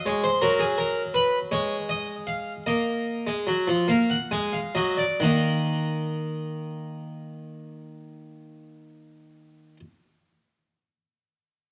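The rhythm moves in a straight 6/8, counted in dotted quarters at roughly 44 to 56 BPM, and the pulse slows over the opening stretch before a new section arrives at 5.2 seconds. This is a baroque-style two-part invention in Eb minor for solo harpsichord, tuned to A4 = 439 Hz, with a driving yet solemn character. The Flemish-style instrument, strung with three sets of strings, sounds plucked, airy and brilliant, with a full body across a range from Eb3 to Ab5. Its harmony passes through Gb, Ab5 and a suspended Bb7sus4 that resolves to Bb7, arriving on Eb minor as the second section opens. Close, detailed microphones keep the harpsichord up front, while a moderate recital-hall reverb adds space, and the instrument falls silent at 9.8 seconds in this passage cut from a longer piece.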